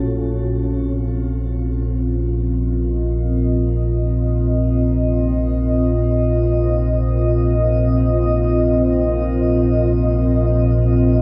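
A rumbling, detuned, wave-folded drone sits up front in this unsettling dark ambient fragment, beneath a moody, ring-modulated pad of sustained chords coloured by chorus and shimmer reverb, with both parts held throughout its 11.2 seconds in a huge, wet, cavernous space.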